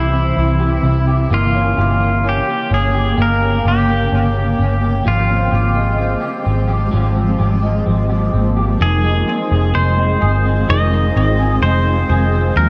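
A spring-reverb haze and heavy echo wrap this hazy, haunting dream pop excerpt at 64 BPM in 4/4, moving from F harmonic minor to F minor at 8.8 s as the chords pass from C through Gdim and Fmadd9/Ab to Fm7. Up front, a clean, fingerpicked pedal steel guitar carries the slide melody with tape echo, while a round, foam-muted vintage electric bass sits dark and prominent beneath. A slightly broken-up, twangy electric guitar through a small old amp picks chorused, echoing arpeggios, and a shimmering, ethereal pad with an octave-up sparkle holds slow-blooming, detuned sustained chords throughout.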